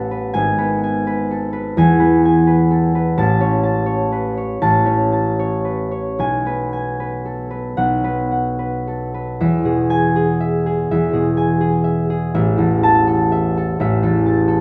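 A concert harp sits up front in a wet recital hall, its reverb lingering about 1.7 seconds and lending each note a ringing halo. This short, graceful and dreamy classical excerpt, cut from a longer piece, is a solo harp piece in E major, tuned to A4 = 441 Hz and moving in a rubato 4/4 between 72 and 86 BPM. The harp plays alone throughout, its thumb-plucked tone warm and acoustic as it ranges from a deep G#1 up to A5. The harmony drifts through G#m, E and Aadd9 before settling on G#m/B and an open B5. At 9.4 seconds a new section begins on E and eases toward an A5 chord at 12.3 seconds, closing the passage at 14.6 seconds.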